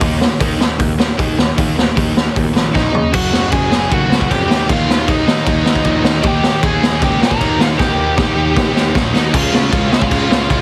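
A straight 4/4 pulse from a raw garage drum kit sits up front in this short, rebellious and upbeat punk rock cut, its boomy kick, medium-tuned snare, hi-hat, crash and toms sounding saturated and gritty with a rolled-off top, and fills arriving at 2.7 and 7.8 seconds. Underneath, a growly fuzz-picked electric bass and a sludgy distorted guitar churn in the background, alongside a very quiet overdriven electric guitar playing its own riff. At 2.7 seconds a bluesy overdriven lead guitar takes the melody, its distorted tone carried by tape echo. A scooped, double-tracked high-gain guitar adds a bright, very quiet riff layer from 6.2 seconds, while the harmony moves from Eb5 through Gb5, Eb and Db. The room is dry and the whole mix is squeezed into a heavily compressed, radio-ready sound.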